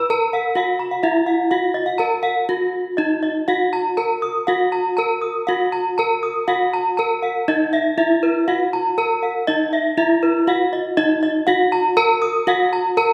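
A steady, straight 4/4 pulse at 120 BPM drives this brief gamelan passage, cut from a longer piece and tuned slightly above concert pitch with A4 at 441 Hz. Two bronze metallophones sound together from start to finish: one carries the melody in the lower register, from Eb4 up to Cb5-40c, while the other spins arpeggios above it, reaching up to Eb6. Both are struck with horn mallets and sit up front, their bright, ringing tone shaped by paired tuning that produces shimmering beats. The higher arpeggio part has an extra airy quality that floats over the metallic core of the melody. After an opening statement, the music moves into a new section at 3.0 seconds that runs to the end. A wet recital-hall reverb, like that of a church or concert hall, lets the strokes bloom and linger, giving the whole a brilliant, glimmering mood.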